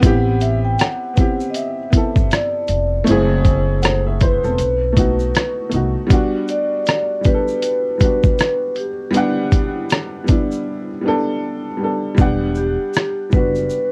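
Nostalgic and reflective, this lo-fi hip hop cut from a longer piece moves at 79 BPM in E minor with a swung feel, as a ringing, soft-mallet vibraphone melody with slow motor vibrato floats over a dark, slightly detuned upright piano with audible action noise, both bathed in plate reverb, while a woody pizzicato upright bass drops out at 5.9 seconds and returns at 12.2, a gritty, overdriven sampler-style kit of thumpy kick, hi-hat and rim click sits up front before a break at 10.7 seconds and muted hats thereafter, and a grainy egg shaker lingers in the background, all colored by worn, warbling cassette tape.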